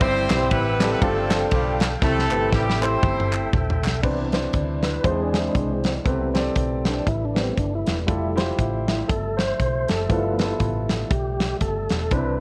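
A swung eighth-note groove in four drives this brief, uplifting cut from a longer piece of uptempo gospel, with a punchy, up-front studio drum kit of bright cymbals and a medium-tuned snare, plus crisp, close handclaps over the opening bars. A warm, tight horn section carries the melody at first in jazz-style octave doublings with light vibrato, while an intimate grand piano with audible action noise and long sustain fills in the harmony and a dark, round hollow-body electric bass holds down the low end. A drum fill at 2.0 seconds leads into the second passage, where at 4.0 seconds the clean tonewheel organ, which has been sustaining chords through a slow rotary speaker, steps forward to take a solo. Beneath it, a very quiet, distant French horn section adds soft-attacked, roomy classical-style chords over a rich, jubilant progression of ninth and thirteenth chords. The whole track sits in a light, small-room ambience and carries the worn, warbling pitch drift of old cassette tape.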